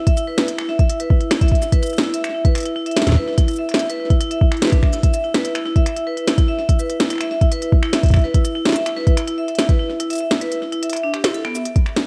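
IDM excerpt with an intricate, melancholic mood, where bright, ringing vibraphone arpeggios struck with hard mallets and touched with digital delay sit up front beside an overdriven electronic kick and an overdriven kit of finger snaps, smooth hi-hat, shaker and woody snare re-recorded in a small room, all dry and close before a break at 10.0 seconds.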